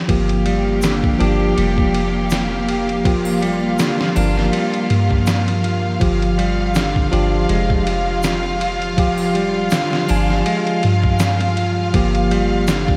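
A tine electric piano, heard through a combo amp with tremolo and tape echo, opens this smoky, brooding trip hop excerpt at 0.0 seconds and carries the accompaniment in G phrygian. Almost at once a bowed symphonic string section joins with sustained chords, its ensemble tone rich and biting, with light vibrato and an intense, close presence. Beneath them a soft 808-style bass sits deep and round, its sine-like notes decaying from a fast attack. A dusty soul sampler-style drum kit, compressed and gritty with a thumpy kick, fat snare and ride cymbal, re-recorded in a large room, sets a slow 81 BPM groove in 4/4 with a light swing on the sixteenths. From 0.5 seconds a clean, picked electric guitar adds arpeggios in the background, roughened by vintage 12-bit sampler grit and tape echo, and from 0.8 seconds a tube shaker and triangle sit quietly behind. The harmony moves from Gm7 to Fmadd9 and back, all set in a dreamy mix soaked in a huge ambient reverb and laced with vinyl crackle.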